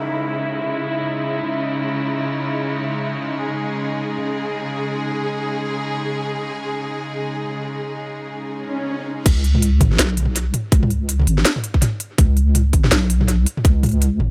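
Spacious and tense, this half-time drum and bass excerpt at 164 BPM in C# minor opens with a clear, biting string section holding sustained chords, pumped by sidechain and softened by a low-pass filter, framed by an electronic downlifter at the start and a swell from 8.6 seconds. At 9.3 seconds the drop lands with a deep, dark wobble bass, saturated and thickened with chorus, alongside an up-front drum kit of cracking snare, crisp hats, crash and toms treated with tape echo, plus a tight, tape-warm electronic kick. Light reverb and digital ambience give the echo-heavy mix its sense of space.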